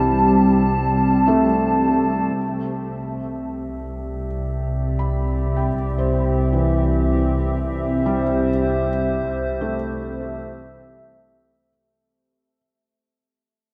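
A serene, weightless ambient excerpt in C major at 77 BPM in 3/4 opens with a warbly, nostalgic tape-like pad holding sustained chords, soft felt-muted upright piano arpeggios trailing a diffuse delay, a dark bowed chamber double bass section on a low C, a tense string-like drone that stops at 2.4 seconds, and a glassy, airy glass harmonica texture; from 2.4 seconds the pad, piano and harmonica fade in, and the whole piece fades out from 8.6 seconds inside a vast, echoing cathedral reverb.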